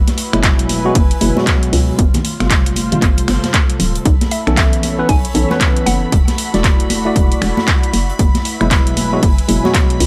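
A dry, close-sounding excerpt of deep, warm deep house, swung on the sixteenths, where an up-front electronic kick, snaps, claps and hi-hat from a punchy analog drum machine, and small-room congas sit over a very quiet arena kit's hi-hat and snare. A hollow, bouncy FM bass, a dark con sordino studio string section and worn, slightly out-of-tune tine electric piano stabs with tape echo all pump against the kick through suspended ninth chords. At 4.1 s a silky, detuned analog string pad with ensemble chorus drifts in behind, and from 4.3 s to 6.6 s a woody, mellow mallet-like synth pluck adds a brief melody coloured by chorus, phaser and tape echo.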